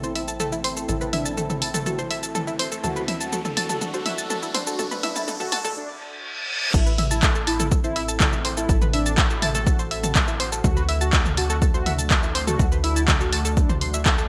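A bright, 1980s-style digital sheen with light reverb frames this hypnotic, cinematic melodic techno passage, where a dark, detuned synth brass melody, a deep, moody ambient pad, gritty round analog pluck arpeggios and a tight sawtooth sequencer bass all pump against the beat, while a punchy analog drum machine with gated reverb plays crash, handclaps, hi-hat, shaker and toms, a filter-swept build-up runs from the start with a riser climbing from 2.2 s into a reverse cymbal at 5.8 s, and an overdriven, layered electronic kick drops in at 6.7 s.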